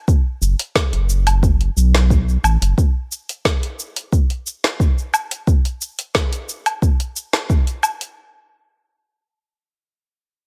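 A straight 4/4 groove at 89 BPM drives this short organic downtempo excerpt, built from an up-front, tape-warm afro-pop kit of woody snare, metallic hi-hat, cabasa and woodblock, anchored by a deep electronic kick. A round, dark analog bass with a sine-like tone and sidechain pumping sits between F#1 and B1 from 0.4 to 2.7 seconds. After that, the kick carries on until 7.6 seconds and the kit until 8.1 seconds. The sound is dry and close, giving the mystical, warm mood an intimate feel.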